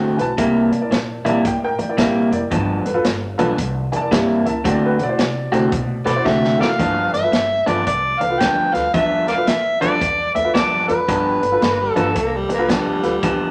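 Drenched in wet, large studio reverb, this laid-back, soulful electric blues shuffle at 112 BPM in G mixolydian rides on a slightly broken-up, up-front electric guitar riff through a small old amp, a woody, growly pizzicato upright bass, a dark, mellow upright piano and a vintage drum kit with a punchy kick and rolled-off top, while a gritty, overdriven harmonica takes the melody from 6.1 s around a drum fill and a raspy, growling tenor saxophone adds a second line from 11.6 s.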